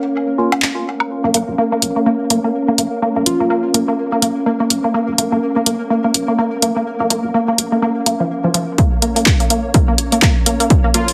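Heavily compressed and radio-like, with a wet studio reverb, this clinical, hypnotic minimal techno cut from a longer piece sits at 125 BPM in Bb minor with a swung 16th feel. A bright pulsing gated texture hums in the background, joined by a dark, warbly, lo-fi tape-like pad, both with chorus and sidechain pumping. A hollow percussive organ stab lands at 0.4 seconds, followed by a brief cowbell and woodblock hit with delay. Then a tape-warm analog drum machine with handclaps and hi-hat holds the groove up front. From 1.2 seconds a squelchy, nasal, resonant blip pluck riff with tape echo and a deep sine sub bass drive a long build-up, with a filter sweep on the digital synth lead. A mellow, catchy plucky unison lead flickers briefly, and a punchy electronic kick drum arrives at 8.8 seconds.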